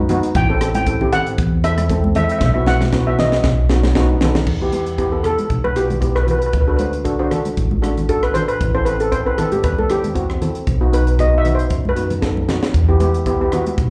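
Cool and bittersweet, this calypso excerpt in E minor moves at 116 BPM with a light sixteenth-note swing, heard as a live gig through a venue's PA with club reverb. A woody pizzicato upright bass on steel strings anchors the low end, while a second set of steel pans, airy cello pans played with medium rubber sticks, fills in the accompaniment with a slapback echo. The lead pan, struck with hard rubber sticks, sits up front with a dark, smooth shimmer, carrying the melody from 0.4 seconds and taking a solo from 4.5 seconds onward, also treated with slapback echo. A crisp fusion drum kit with a high-tuned snare and tight kick drives the groove with hi-hat, rim clicks and crash cymbal, adding fills around 2.4 and 12.2 seconds. Ringing, high-tuned congas tucked in the background add their own slapback echo as the harmony passes from Am7 through Bsus4 and B7 before cycling through Em, D, Am7 and B to land back on Em.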